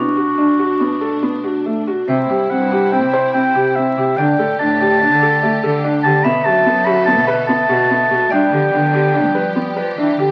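A mellow clarinet carries the melody up front in a classical solo style, opening this urgent, restless slice of contemporary chamber music that is cut from a longer piece. It moves at 144 BPM in an uneven 5/4 with a straight feel, in B phrygian. Beside it, a felt-muted upright piano plays soft, intimate arpeggios with audible action noise and a vintage character. A vibraphone struck with medium hard mallets adds a metallic, ringing second line with slow motor vibrato. A clear, focused string section holds lush bowed chords close behind, moving from Bm7 through C, Dsus4 and back to Bm7 before landing on G7. After an opening break, a dark, woody solo cello enters at 2.1 seconds with a distant bowed bass line, and moderate studio reverb sits over a crackling, very old 78 rpm record sound.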